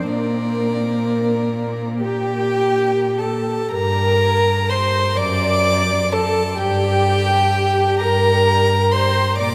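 A vast, echoing space surrounds this short cut from a longer classical piece, with a huge, wet reverb giving the string quartet a long, glowing tail. It is a slow, lyrical romantic movement in a lilting 6/8, played with rubato and a warm, tender mood that darkens as the harmony turns to the minor at 3.7 s. The first violin carries the melody high and up front, its rich tone softened by light vibrato, an airy bow and sul tasto playing, sounding close and intimate. Beneath it the second violin sings a pure, floating second line, while the viola supplies a woody, dark accompaniment with vibrato from further back. The cello anchors the bass, close and intimate with a soft attack and light vibrato, and all four players sound together throughout the 9.5 seconds.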